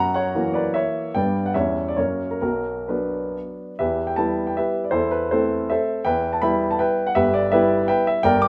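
Nostalgic and wistful, this short cut from a longer romantic classical piece is a triple-time dance in dotted rhythms for solo baby grand piano, its polished, present tone placed up front and bathed in a moderate large-studio reverb as the rubato phrasing shifts into a new section at 3.8 s.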